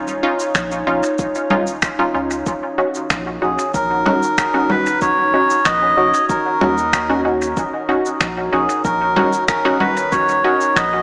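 A reedy, breathy melodica sits up front in this meditative, spacious slice of ambient dub, entering at 3.4 s with a mellow, nasal tone and trailing dub echoes. Beneath it, a warbling, lo-fi pad holds nostalgic, dark sustained chords with a slow attack and long release, softened by chorus and its own reverb. A muted, detuned chord stab with a quick filter pluck cuts through prominently, its chorus and dub echo adding depth, while a round, soft sub bass hums far below. Tape-warm electronic shaker, finger snaps and congas carry dub echo over a gentle electronic kick that joins at 0.6 s, both sounding as if re-recorded in a small room. The harmony moves from Dbadd9/Eb to Ebm7, and the whole piece is bathed in a wet, stage-like reverb with a small-speaker character, heard as a fragment cut from a longer work.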